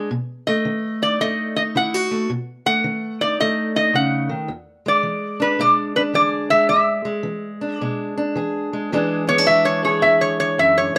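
A metallic, nasal resonator slide guitar sits up front, carrying the melody from 0.5 seconds with fingerpicks and a steel bar, and takes a solo at 8.9 seconds in this gritty, swaggering acoustic country blues cut from a longer piece. Beneath it, a dark, boxy parlour steel-string guitar is fingerpicked in a swung 4/4, moving from B7 to E7. Light reverb and close, detailed microphones keep both guitars present and intimate.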